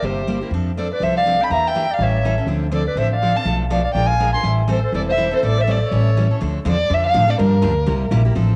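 A brisk swing at 245 BPM in 4/4 propels this short cut from a longer jazz manouche piece in A minor, its eighths carrying a lilting feel. Pizzicato upright bass on gut strings sits up front, woody and thumpy, with tube saturation thickening its tone. A picked steel-string acoustic guitar supplies bright, full-bodied accompaniment with the snap of fresh strings, moving through chords such as C7, Em7b5, Bm7b5 and Bb7 before the harmony turns to Dm7, Gm7 and C7 at 6.4 seconds. A single bowed violin carries the melody, dark and expressive, with vibrato, portamento and a smooth top. Alongside it, a punchy, forceful clarinet in jazz style adds a present second line with light vibrato until it drops out at 6.3 seconds. Violin, clarinet and guitar share a worn cassette-tape tint, and a wet spring reverb gives the home recording a virtuosic, swinging glow.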